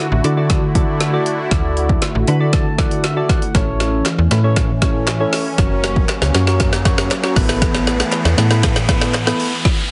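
A punchy deep house drum kit with a woody snare and dark hats sits up front in this upbeat, euphoric dance-pop build-up at 118 BPM in D major. A snappy, metallic FM slap bass and mellow, round electric-piano-like keys pump against the kick, with the keys adding a fill at 2.0 s, while an airy, detuned sawtooth pad sustains chords moving from Dadd9 through A and F# to Asus2. Crisp group handclaps join in the background at 4.1 s and an electronic riser enters from 4.8 s beneath a drum fill, all within a heavily compressed, radio-like sound with light reverb.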